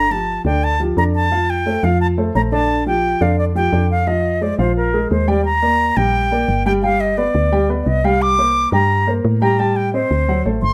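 Sophisticated and sunny, this brief jazz excerpt features a bright, reedy concert flute with vibrato carrying the melody up front, supported by a warm baby grand piano whose action noise lends an intimate feel, and a soft, round FM bass with a woody, dark tone, all set in moderate studio reverb as the harmony shifts at 5.5 s.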